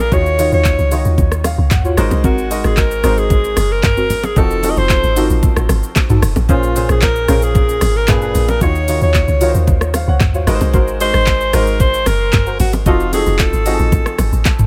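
Late-night and deep, this amapiano excerpt moves at 113 BPM in a straight 4/4, cut from a longer piece and cycling through minor-ninth and altered dominant chords that open on Ebm9. A breathy alto saxophone carries the melody up front, whispered and intimate with a soft attack and a pop-style solo voice, touched by digital delay. Beneath it, a round, percussive log drum bass sits dark and up front, its fast attack and noise layer giving each decaying note a firm edge. A smooth R&B drum kit with a knocking kick, metallic hats, handclaps, rim clicks, shaker and toms has a produced, tape-warm character and shares the foreground with the bass. A clear, slightly worn concert grand piano supplies short-sustained accompaniment with a deep low end, adding a brief fill from 1.2 to 2.2 seconds. In the background, a soft, full-bodied chord stab built from detuned triangle, sawtooth and sine tones, with a filter sweep, chorus and delay, mixes with close, dry congas and bongos played with hard hands, all wrapped in a digital ambience.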